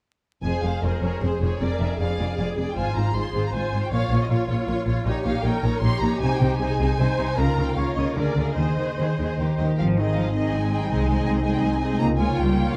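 Close, detailed microphones and light reverb frame this stormy, restless romantic orchestral passage, with a faint vinyl crackle beneath it. It is a fast 3/4 movement at 146-165 BPM that begins in F minor and turns to Ab major at 5.1 s. Soft-attacked violins carry an expressive melody over a second violin line with portamento, while viola accompaniment, focused cellos and a rich double bass section give the bowed strings a lush weight. A mellow, thumb-plucked concert harp rings out arpeggios in the background, and tight French horns add sustained chords from 9.8 s until this fragment of a longer piece is cut off.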